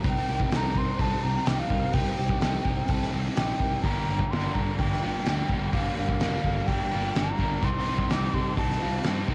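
Lo-fi cassette tape character and small-room ambience frame this dreamy, melancholic shoegaze and dream pop excerpt in G minor at 126 BPM, where a breathy, mellow flute with unsteady vibrato and tape echo carries the melody over Cm7, Gm7 and Cm7 again, an up-front loose indie drum kit with a fat snare and punchy kick drives the straight 4/4 pulse, a hollow-body semi-hollow guitar with analog chorus and a crunchy overdriven guitar with reverse reverb play riffs, a bright, twangy guitar through a small old amp adds arpeggios with subtle chorus and tape echo in the background, and a dark, round fuzz bass sits underneath.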